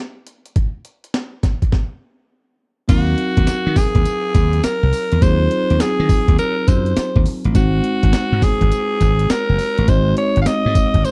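Bouncy and slick, this new jack swing R&B clip opens with a gritty, pitched-up breakbeat kit of thumpy kick, snare, hi-hat, crash and tambourine that halts for a stop at 1.7 seconds, before punchy slap bass, a bell-like tine electric piano with phaser and an up-front, raspy alto saxophone lead with slapback echo enter together at 2.9 seconds over a swung groove in a dry, close 1970s-style studio sound.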